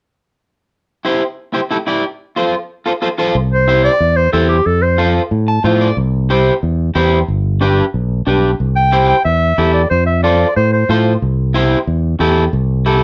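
This Latin excerpt is festive and sunny, moving at a brisk 183 BPM in straight 4/4 in C major, and it is cut from a longer piece. A twangy electric guitar at the edge of break-up opens at 1.0 seconds, picking a slightly broken-up accompaniment over C and F chords. At 3.3 seconds a growly, punchy fingered electric bass comes in up front, and the harmony grows to take in G. A clear clarinet carries the melody in two solo phrases, the first starting at 3.5 seconds, played jazz style with light vibrato, while a short clean electric guitar fill slips in between them. Light reverb and a worn, warbling cassette-tape pitch drift give the recording an aged, wobbly character.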